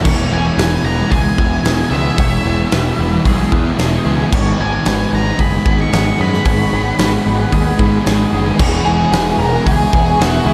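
A huge arena drum kit leads this wistful, blissful fragment of shoegaze and dream-pop rock, its fat snare, punchy kick, crash cymbal and hi-hat sitting up front in a natural big-room sound at 112 BPM in a straight 4/4. Beneath it, a growling picked electric bass adds bright, overdriven bite, while a thick fuzz guitar with ensemble chorus and a dark, overdriven semi-hollow guitar with reverse reverb churn out riffs in the background. From 0.3 seconds an octave-fuzz lead guitar carries the melody with a dusky, distorted tone and tape echo. A bright, twangy twelve-string electric guitar with subtle chorus and tape echo shimmers through clean arpeggios behind it. A cloudy, evolving granular pad with its own reverb and phaser sounds briefly at the start and returns at 5.5 seconds with blurred, detuned sustained chords. In E major, the harmony moves from E6 to G#m7 and back to E6 at 8.6 seconds, all soaked in a dreamy, vast ambient reverb.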